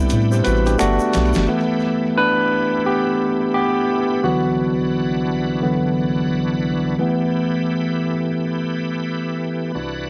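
A barky, lightly overdriven tine electric piano and a bright, shouting tonewheel organ with chorus vibrato and slow rotary speaker open this smooth, soulful neo-soul R&B excerpt in G major at 87 BPM, with a swung 16th feel over Am9 and Gmaj7 chords. For the first 1.5 seconds a rubbery, hollow square bass, a dusty, gritty sampler-style drum kit playing a fill on hi-hat and snare, and a background egg shaker with finger snaps join in, the drums and percussion carrying tape echo. From 1.5 seconds the bass and drums fall away and the up-front electric piano takes a solo over the sustained organ through G69 and Cmaj9#11, in an echo-heavy mix with light digital ambience.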